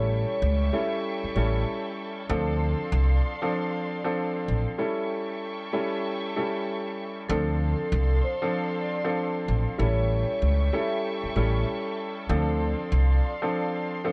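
Hip hop in D minor at 96 BPM, with a swung sixteenth-note feel and a reflective, dark mood, this short section cut from a longer piece moves between A7 and Dm7 chords. An up-front upright bass, plucked and growly with a woody, steel-string bite, anchors the low end until 13.2 seconds, while an intimate upright piano carries the accompaniment throughout, its vintage cassette-tape coloring, long sustain and audible action noise giving it a worn, close character. Behind them, a lush bowed string section holds sustained chords with vibrato. A vibraphone played with medium mallets sits in the background, its metallic, ringing tone carrying a slow motor vibrato and touched with delay, sounding briefly at the start and returning at 7.3 seconds after a break that begins at 4.8 seconds. A small room reverb keeps the whole arrangement feeling snug and unhurried.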